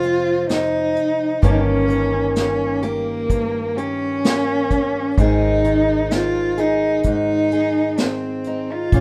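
A dark, woody cello carries the melody with vibrato from the first moment, alongside fingerpicked steel-string acoustic guitar with audible finger squeak, a round, punchy foam-muted electric bass and a vintage brush kit with a tight kick and a softened top. This acoustic folk-pop ballad moves at an unhurried pace in a straight four, its intimate, nostalgic mood framed by light reverb and a small-room feel around the drums. The passage is a section lifted from a longer piece, with all four parts playing throughout its 9 seconds.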